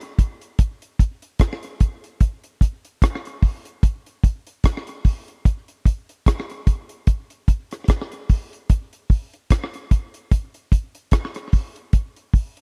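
A deep reggae drum kit carries this 12.6-second excerpt on its own, setting a hypnotic, serious mood at a slow 74 BPM in 4/4. The kit uses hi-hat, kick drum and rim click, with a tight kick and a dark, smooth acoustic tone that sits up front. The 16ths carry a light swing of 57%, giving the groove a relaxed, rolling lilt. A slapback echo trails the drums, adding a subtle doubled edge to each hit. The recording has the dry, close sound of a 1970s-style studio, with little reverb around the kit.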